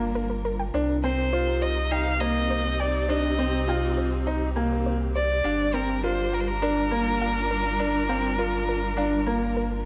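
Hypnotic and melancholic, this piano and strings electronica fragment sets a brilliant, woody upright piano riff with digital delay over a deep sine sub bass and sustained studio string chords with portamento, while a soft, round pluck arpeggiates quietly in the background and a nasal, vibrato-rich solo violin enters at 1.0 seconds to carry the melody up front, all moving from Gm7 to Cm and back within a moderate scoring-stage reverb.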